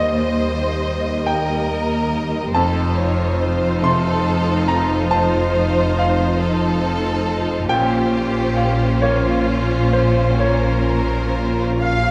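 A slow, unhurried 6/8 pulse at 46 dotted-quarter beats per minute stretches and bends freely in rubato, giving this cinematic passage a moving, sorrowful breath. Two violin sections carry the top: one sings the melody with a soft, vibrato-laden tone, while a close, rich second section shapes a second line above a lush viola section that fills in the harmony with intense bowing. Cellos anchor the low end with smooth, even tones, joined by double basses with a soft attack and expressive warmth, and a brilliant, polished grand piano spans from deep bass to high register with short, present notes. The harmony moves from Eb to F7 and settles on Bbmadd9, and a clear solo oboe enters only at 11.8 seconds just as this fragment of a longer piece ends. A moderate concert hall reverb surrounds the ensemble with a spacious, symphonic glow.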